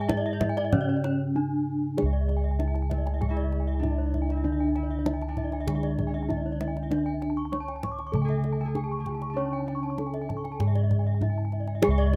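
Close, dry and detailed, this hypnotic, brilliant excerpt of Balinese gamelan in straight 4/4 sets a smooth, dark, wooden-mallet bronze metallophone melody with shimmering paired-tuning beats over a ringing lower metallophone accompaniment, two high metallophone arpeggio lines (one shimmering, the other struck with horn mallets), and round, mellow bossed gongs carrying the bass up front under padded beaters, while a tight kendang played with hard hands delivers a fill at 1.4 seconds before a fingerpicked concert harp enters at 2.9 seconds with a ringing second line.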